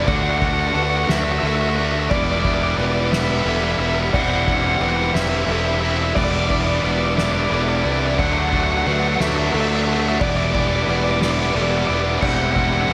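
A bright, overdriven electric guitar riff sits up front in this brooding, cathartic post-rock passage in 6/8, cut from a longer piece. Above it, an overdriven semi-hollow guitar carries the melody with a hollow-body tone and slapback echo, while a fuzz-laden fingered bass, round and punchy, anchors the low end just as prominently. Deeper in the mix, a felt-muted upright piano plays dark, intimate arpeggios with audible action noise, slapback echo and analog delay, and a very quiet con sordino string section holds veiled, bowed chords with vibrato. A distant, roomy drum kit played with soft mallets adds a fat snare, punchy kick and dark crash and ride cymbals. At 8.2 s a compressed fuzz guitar joins in the background with a second picked riff, as the harmony cycles through Dadd9, Em7 and Cadd9/E beneath a lush hall reverb that gives the whole a big arena sound.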